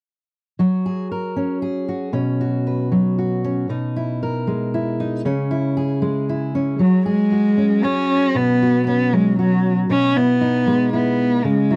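Uplifting and warm, this folk fragment from a longer piece moves at 116 BPM in a straight 3/4, opening at 0.6 seconds with a dark, fingerpicked steel-string dreadnought guitar moving through F#sus2, Bsus2, Emaj7/B and C#m. At 6.8 seconds a single bowed cello enters up front with the melody, its soft attack, vibrato and expressive portamento singing over the guitar as the progression returns. The sound is dry and close, like a 1970s studio recording, with both players placed near the listener.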